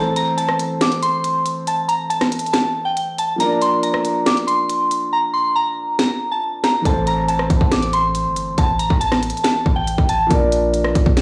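This melancholic, brooding trap cut from a longer hip hop piece moves in a half-time feel. A soft, pure FM synth bell carries the melody up front, its gentle, mellow tone coloured by chorus, phaser and slapback echo, until it stops at 10.3 seconds. Beneath it, a dark, smooth baby grand piano with a vintage character supplies the accompaniment over a brooding alternation of A minor and B-flat. The electronic trap kit sits up front with a hard-clipped kick, sharp snare, rim clicks and crisp hi-hats, and the hats drop out at 5.1 seconds during the opening break. At 6.9 seconds a clean, deep, boomy 808-style sine bass arrives with a fast attack and a dark, decaying tail. The recording carries light studio reverb and a blown-out, overdriven sound.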